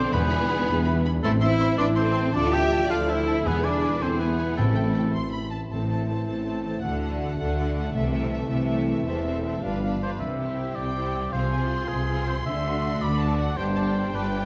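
Set in a 6/8 at 107 dotted-quarter beats per minute, this cinematic excerpt from a heroic adventure score moves in a swashbuckling, adventurous spirit from A minor into C major at 10.2 seconds. A dark, lush violin section carries the melody high in its range with vibrato, soft attacks and expressive portamento, while a second violin section and a warm oboe share a supporting line, the oboe playing with light vibrato in two passages that end at 5.1 seconds and resume at 10.0 seconds. Violas fill in smooth, even accompaniment in the background, and a mellow French horn section holds sustained chords until 10.0 seconds, joined from 5.7 seconds by a close-miked trombone section that also sustains chords. Underneath, clear but distant cellos and a rich, focused double bass section anchor the bass, and a very quiet concert harp rings out thumb-plucked arpeggios across a broad span. Sparse timpani strokes with hard mallets punctuate the phrases articulately, and the whole orchestra sits in a generous scoring-stage reverb that gives it a lush, spacious sheen.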